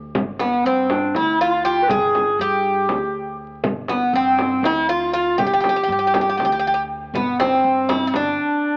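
This Turkish makam ensemble fragment, cut from a longer piece, moves in a stately 7/8 at 240 beats per minute counted in eighths, centred on G in makam hicaz. A picked Greek bouzouki carries the melody up front, its metallic double strings and occasional octave-doubled courses set within a warm, acoustic tone. Beside it, a soft-attacked clarinet in classical style traces a second line with a roomy, solo character. A small, bright frame drum keeps the pulse from just after the start, while a woody, thumpy pizzicato upright bass sits low beneath the ensemble from 0.0 seconds. The whole recording comes through a wet spring reverb and a worn, warbling old-tape sound with vinyl crackle, wavering pitch and an AM-radio tone, lending a warm, faded air as a new section arrives at 7.1 seconds.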